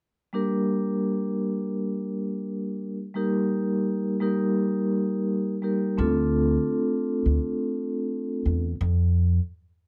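Soft-mallet vibraphone opens this moody, reflective boom-bap hip-hop excerpt at 0.3 s, its mellow, metallic ringing tone filtered and warm with a slow motor vibrato over Gm, Eb and Dm7 chords in G minor at 85 BPM with a swung 16th-note feel. An acoustic upright bass, plucked pizzicato on steel strings with a woody character, sits up front from 6.0 s to 9.4 s, and the production is dark and warm with light reverb.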